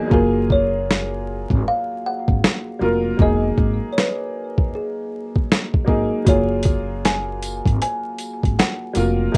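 A 4/4 groove at 78 BPM, its 16ths swung at 63%, carries this cosy, dreamy lo-fi hip hop excerpt in F# major. A sampler-style boom bap kit sits up front, gritty and pitched down, with a thumpy kick, a medium-tuned snare and hi-hat. Beneath it, a pizzicato upright bass with steel strings adds a growly, low pulse. A smooth, vintage upright piano carries the chords through a cassette-tape haze and a low-pass filter, moving from F#maj9 to a rootless Emaj9#11 at 3.2 seconds and back to F#maj9 at 6.3 seconds, while a thumb-plucked kalimba, also filtered, traces short, woody melody notes above. A jingly tambourine slips in quietly in the background from 6.7 seconds. Light reverb and vinyl crackle give the whole piece the feel of a rough home demo.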